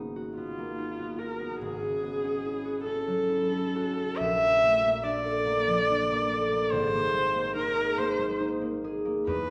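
This is an impressionist classical duo for viola and harp, dreamy and pastoral in mood, moving in a slow, rubato 6/8 at about 47 beats per minute counted in dotted quarters. The concert harp opens the excerpt at 0.0 s with a mellow, ringing, fingerpicked accompaniment reaching from G#1 up to A4. A warm, bowed solo viola joins at 0.4 s, carrying an expressive melody between F4 and E5 with vibrato and portamento, sitting a little louder than the harp. The harmony drifts from G#m9 through F#m7/G# and Bbmaj7 before settling on G#add9. Both instruments sit up front, yet a wet recital-hall reverb and a softened top end give the sense of hearing them from further back in the room.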